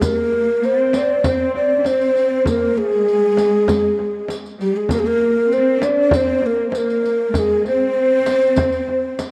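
Soulful and melancholic, this excerpt from a longer Turkish makam ensemble piece in straight 4/4 features a breathy, hollow ney carrying the melody up front, while a dark, woody cello section with vibrato plays a lush bowed second line beneath it. A deep frame drum played with soft hands sits close and dry, and a quieter riq adds bright jingles from a distant, large-sounding room. Every part passes through analog delay, and a moderate plate reverb and cassette tape character give the echo-heavy mix a worn, atmospheric feel.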